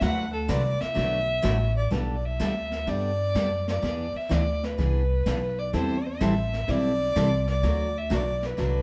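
Down-home and swinging, this short cut from a longer western swing number moves at 126 BPM in G major with a lilting eighth-note swing. A bowed fiddle carries the melody from the opening, smooth and even with a light vibrato, sitting up front alongside a woody, dark pizzicato upright bass. A picked jumbo steel-string acoustic guitar fills in the accompaniment with a bright, full-bodied tone. Further back, a vintage brush kit with a medium-tuned snare, tight kick and hi-hat keeps time, its top rolled off. The band sounds as if playing live together in a stone room with a moderate reverb, and the harmony runs from D6 through Gadd9, E7 and Am7 before landing on D at 7.6 seconds.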